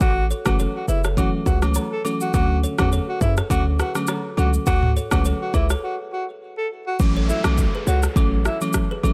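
A lightly swung afrobeats groove at 103 BPM in 4/4 carries this sunny, romantic excerpt in A major, built on a produced, tape-toned drum kit with a deep kick, rim click, shaker and toms, plus agogo bells and woodblock that add a live-room acoustic sparkle. Up front sits a punchy, heavy 808-style bass with a sine core and a noise layer, its fast-attack notes decaying beneath the harmony as it moves between A6 and Dmaj7. A breathy alto saxophone sings the melody in an intimate, whispered pop style, trailed by digital delay. A plucked, woody kalimba riff joins at 0.3 seconds with short thumbnail-picked notes and its own delay, and an FM electric piano layered with a soft pad follows at 0.5 seconds, lush, dreamy and mellow with detuned chorus shimmer. After a break, an electronic downlifter arrives at 7.0 seconds as the music moves into a new section, all captured dry with little reverb.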